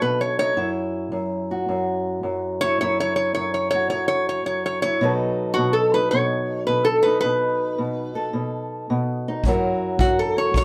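Acoustic country blues at 108 BPM with a swung, gritty and soulful feel, cut from a longer piece, where a metallic, nasal resonator slide guitar played with a steel bar and fingerpicks solos up front over a dark, boxy, fingerpicked ladder-braced acoustic guitar moving through B7, C#madd11/F# and F#7, while a punchy kick drum played with brushes enters at 9.4 seconds, all captured live in a small room with moderate reverb.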